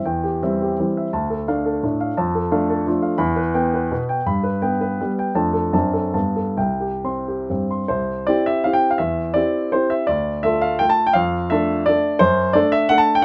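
Close, detailed microphones and a nearly dry room put the grand piano up front, its tone warm, present and polished. This is a classical piece in the romantic style, a proud and graceful triple-time dance in 3/4 with dotted rhythms, taken with a flexible rubato that moves between 124 and 186 BPM. The solo piano spans from C2 up to C6. Its harmony stays in C major, passing from C over E through D minor and E minor to G. It touches a D7 over F sharp and a G with an added ninth before settling on C around 6.6 seconds. At 7.9 seconds the opening section begins again and follows a similar path through C over E and D minor, reaching D over F sharp as this cut from a longer piece ends at 13.2 seconds.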